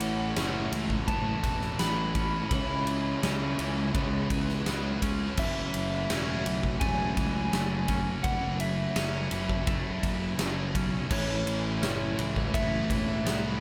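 Wistful and blissful, this shoegaze and dream pop rock excerpt sets a round, warbling FM synth lead with chorus and tape echo carrying the melody over a thick fuzz guitar riff, an overdriven hollow-body guitar riff in the background with reverse reverb, bright, twangy guitar arpeggios with tape echo, a punchy overdriven fingered bass and a huge, up-front arena drum kit of kick, snare, crash and ride, moving through A69, C#m7 and F#m7 chords in light small-room reverb.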